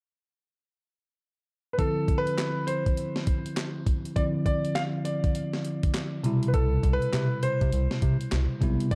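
Punchy and slick, this new jack swing R&B excerpt opens on a brief chordless moment before a clear concert grand piano takes the melody at 1.7 seconds, joined almost at once by a bell-like tine electric piano comping on Dm9 and a gritty, compressed breakbeat sampler-style kit with a thumpy kick, medium-tuned snare, handclaps and hi-hat riding a swung sixteenth-note groove. A round analog bass with a filter pluck arrives at 6.5 seconds, just after the harmony shifts to Cmaj7, grounding the dark production and its light reverb.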